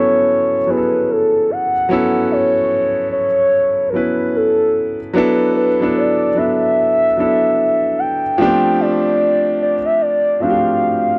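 A mellow, detuned sine lead with chorus, vibrato and gliding portamento carries the melody from 0.0 to 11.2 seconds, its fast attack giving way to smooth, sustained tones in this soulful R&B passage at 74 BPM with a swung 16th-note feel. Beneath it, an intimate concert grand piano supplies accompaniment, its deep bass and audible action noise sitting up front as the harmony moves through B9sus4, E9sus4 and G9sus4. The short cut from a longer piece has the dry, close sound of a 1970s-style studio, touched with light reverb.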